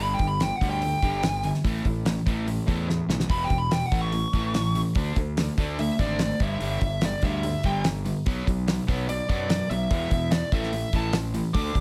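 A dark, fuzzy lead guitar solo sits up front throughout this swaggering, confident classic rock excerpt, its distorted tone carrying a slapback echo. Beneath it, a crunchy overdriven guitar and a bright, compressed distorted guitar play riffs in the background, while a growly, fuzzed-out fingered bass holds down the low end. A damped 70s drum kit with a fat snare and tight kick comes in at 0.2 seconds, dry and up front, adding a short fill at 2.9 seconds, all in a light reverb.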